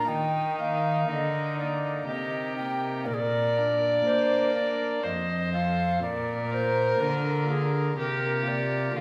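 Moving in a flexible triple metre with a rubato feel, this short passage cut from a longer baroque-style sonata movement carries a solemn, grave mood. A bright wooden flute with an airy, straight tone and crisp attack sings the melody from 0.0 to 9.0 seconds, its lifted highs sitting above the ensemble. Beneath it, a dark violin played by one bowed player adds a second line with a nasal, reedy gut-string sound in period style, heard up front yet with a distant quality. A pipe organ on a cornet solo stop supplies the accompaniment with a baroque voicing and audible chiff, while a single bowed cello, close and up front, anchors the bass with a rich gut-string tone. The harmony moves from Eb to Bb, touches F7 at 5.0 seconds, and settles back on Bb, all within a reverberant recital hall acoustic.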